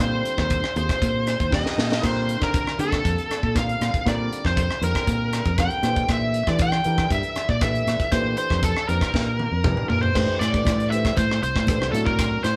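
Soaring and slick, this short cut from a longer electric jazz fusion piece moves in a straight 4/4 feel with a band playing live together in one room under a moderate studio reverb. A bluesy, distorted lead guitar carries the melody up front, while a crunchy overdriven second guitar plays a second line in the same register further back, bathed in spring reverb. A grand piano supplies warm accompaniment, and a fingered electric bass sounds dark, round and punchy beneath the harmony, which moves from Ab69 through Bbmaj9 and C7/Bb before shifting to Am7 and D7/A near the close. The tight funk drum kit sits up front with a high-tuned snare, a tight kick and a rolled-off top, adding fills at 1.5 and again from 9.1 seconds, leading into a new section that arrives at 10.2 seconds. Very quiet congas with a thick skin and hard hands join at 10.1 seconds for the final stretch.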